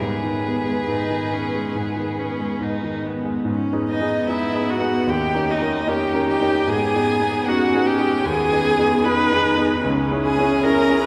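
A long, cathedral-like reverb of about 6.5 seconds surrounds this excerpt, which was captured in a church or concert hall. It is a slow, warm and lyrical romantic movement for piano quartet in G# minor, moving at 68-77 BPM in 4/4 with a flexible, rubato pulse. A focused violin with vibrato carries the melody, while a rich, expressive cello sings a second line from the background, colored by vibrato and portamento. Up front, a viola with a clear, smooth top adds bowed accompaniment, and a vintage-sounding grand piano with short sustain supports the harmony in the lower and middle registers. A new section begins at 3.5 s, and the harmony moves from G# minor through D#5 back to G# minor before settling on C# minor at 9.8 s.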